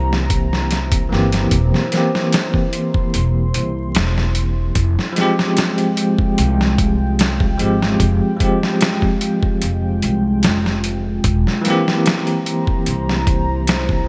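Set in a lush hall reverb with bright, 1980s-style digital sheen and a bed of vinyl crackle, this smoky, cinematic trip hop excerpt moves at 74 BPM in F harmonic minor, drifting from C7 to Fmadd9 at 4.8 seconds and on to C7/E. A gritty, overdriven sampler-style drum kit with a thumpy kick and gated reverb sits up front beside a woody, growly pizzicato upright bass. A bell-like tine electric piano with tremolo and tape echo plays the accompaniment over a deep, moody pad of detuned, wave-folded sustained chords roughened by vintage 12-bit sampler grit.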